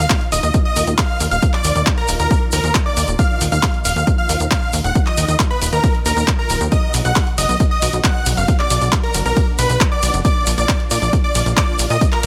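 A huge, detuned supersaw lead carries the melody of this euphoric, emotional uplifting trance excerpt from the very start, with a catchy plucky unison lead tracing a higher second line and a silky, evolving analog string pad holding chords in the background, all three pumping with sidechain and the two leads trailing digital delay. A funky, wave-folded analog bass sits up front with a pumping pluck, while a punchy electronic kick, an analog drum machine with handclaps, hi-hat and ride cymbal, and a grainy, close tube shaker drive the straight 4/4 pulse at 136 BPM from 0.1 seconds. The harmony moves from Ebsus2 to B at 6.7 seconds and Bb at 10.2 seconds in Eb harmonic minor, framed by light reverb and digital ambience.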